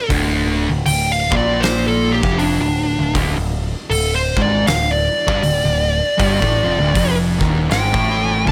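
A slow 79 BPM pulse in 4/4, swung at 60% on the eighth notes, drives this brooding, heavy stoner and doom metal fragment, cut from a longer piece and lasting 8.5 seconds over a D minor chord, tuned to A4 = 439 Hz. An oversized, low-tuned acoustic drum kit of kick, snare and hi-hat sits in a big, pumping room, with a fat snare and a boomy kick that come across saturated and gritty. Beneath it, a growling picked electric bass, overdriven and heard both direct and through an amp, holds down the bottom between D1 and Bb1. A double-tracked fuzz guitar sits up front, playing the riff between D2 and Bb3. Soloing from 0.0 s, a compressed fuzz lead guitar carries the melody between D4 and A5, distorted and treated with delay. A light reverb wraps the mix.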